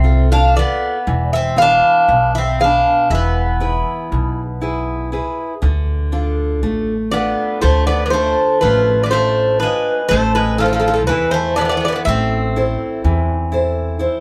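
Heard from further back in a small, reverberant room, this melancholic, wistful Greek folk fragment for bouzouki band is in 9/8 and speeds up throughout. An up-front bouzouki carries the metallic, double-strung melody over a second bouzouki's lower line, while a bright steel-string acoustic guitar picks the accompaniment with audible finger squeak and a woody, growly pizzicato upright bass sits up front. The harmony moves from F to E, shifting to Dm at 5.6 seconds and Am at 10.1 seconds.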